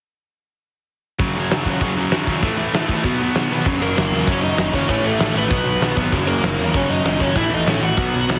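Rebellious and upbeat, this punk rock excerpt charges forward in a straight 4/4. At 1.2 seconds two overdriven electric guitars start a picked riff together: a bright, cranked stack guitar and a crunchier one set back in the mix, moving over power chords. A big acoustic rock kit sits up front with a fat snare, punchy kick, crash, hi-hat and a rolled-off top. After a drum fill at 3.5 seconds, a growly fuzz bass enters, joined at 3.8 seconds by a dark, distorted bluesy lead guitar carrying the melody through a delay. The whole mix has light reverb and a heavily compressed, radio-like sound.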